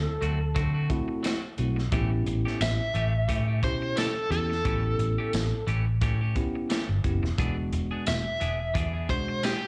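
Soul blues in a straight-eighth groove with a soulful, laid-back mood, heard as a short cut from a longer piece captured live through a venue's PA, with club reverb and a faint mains hum. An overdriven semi-hollow guitar carries the melody as a solo from the first moment, its hollow-body tone treated with tremolo, slapback echo and plate reverb. Underneath, a bell-like tine electric piano supplies the accompaniment, while a clean, twangy electric guitar adds compressed stabs carrying their own slapback echo and plate reverb. A vintage muted fingered bass sits up front with a dark, round, punchy sound, and a crunchy breakbeat drum kit of hi-hat, kick, snare and tambourine brings gritty, saturated texture with a rolled-off top. The harmony moves from D7 to A7 at 1.9 seconds and on to E7 at 7.4 seconds.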